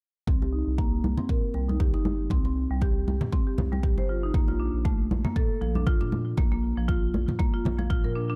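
From 0.3 seconds, a woody rosewood marimba plays arpeggios through a low-pass filter sweep with tape echo and sidechain pumping, over a round, dark analog bass with tube saturation and sidechain pumping, a deep, tape-warm electronic kick up front, and bright, close congas. This earthy, spiritual afro house groove runs at 118 BPM in C dorian with a 16th-note swing. Very quiet electronic toms join at 1.3 seconds, the harmony moves from C5 to Bb at 4.3 seconds, and the dry, gritty hardware sound sits in a small room, cut from a longer piece.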